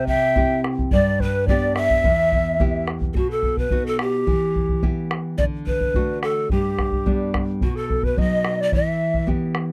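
Andean folk with a festive yet wistful feel, this short section from a longer piece is led by breathy large pan pipes, cane-toned with vibrato, soft attack and a touch of chiff, sitting up front. A reedy, end-blown quena with rolled-off highs traces a second line in the background, dropping out at 2.9 seconds and returning at 6.5 seconds. Underneath, a deep classical nylon-string guitar is fingerpicked with audible finger squeak, while a dark, saturated bombo thumps close by, all captured in a dry, close 1970s-style studio sound.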